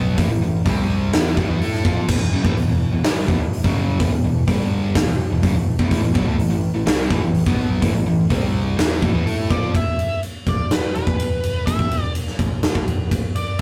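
Driving and aggressive, this hard rock excerpt in E minor moves at 125 BPM, with a sludgy overdriven guitar and a bright, distorted guitar tucked in the background both picking a riff. Beneath them sit a dark, round, foam-muted fingered bass and a big, punchy acoustic drum kit up front, with bright cymbals and a medium-tuned snare. Around 9.5 seconds a smooth, warm overdriven lead guitar steps forward with a high melody as the riff guitars drop out at 9.7 seconds, all in a rough rehearsal-room sound with light reverb and saturation.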